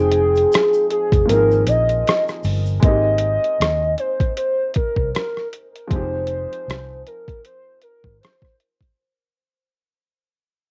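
A warbling, nostalgic lead carries the melody up front in this mellow lo-fi hip hop excerpt, its soft-attack triangle and sawtooth tones sustained with chorus, vibrato, portamento and a cassette-tape haze. Beneath it, an intimate upright piano plays woody, slightly detuned accompaniment with short sustain, audible action noise, plate reverb and its own cassette coloring. A dark, round, foam-muted electric bass sits up front with an amped tone, while a compressed, pitched-down, gritty sampler-style boom bap kit of hi-hat, rim click and thumpy kick drives a lightly swung 4/4 groove. A grainy, bright egg shaker ticks in the background of a live room until 2.8 seconds, and the kick drops out from 1.3 to 2.8 seconds. The harmony drifts through Fm7, Ab69, Abmaj7 and back to Fm7 as the piece fades out from 2.8 seconds, all in a lightly reverberant home-cassette sound cut from a longer piece.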